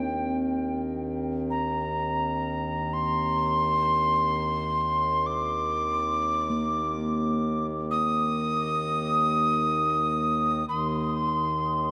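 Drenched in a cathedral reverb with a 6.2-second decay, this dreamy recording floats in a peaceful, spacious haze, a short passage cut from a longer piece of meditative world music. Up front, a breathy alto recorder carries the melody with a woody tone, soft attack, gentle vibrato and rolled-off highs, while tape echo trails each phrase. Beneath it, a reedy, warm pedal harmonium holds a low drone that seems to breathe, also close in the mix. Deep in the background, a quartz singing bowl struck with a felt mallet adds a pure, ringing texture with slow beating. All three parts sound together from 0.0 to 11.9 seconds, creating a calm, contemplative atmosphere.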